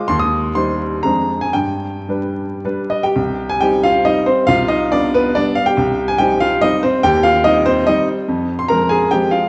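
A wet recital-hall reverb with a 1.8-second decay surrounds this brief passage, and a faint vinyl crackle sits beneath it. A clear, intimate baby grand piano plays alone and up front, its natural tone marked by audible action noise and a short sustain. The music is a romantic classical dance in 3/4 and C minor, with dotted rhythms. Rubato pushes the tempo anywhere between 106 and 152 BPM, giving it a capricious yet wistful mood. The piano ranges from C2 to Eb6, moving from Cm/Eb through Dm7b5/F to G in the opening phrase. A new section begins at 3.1 seconds on Cm and moves through G7/C back to Cm, then settles onto Fm at 8.3 seconds, just before the passage cuts off mid-piece at 9.5 seconds.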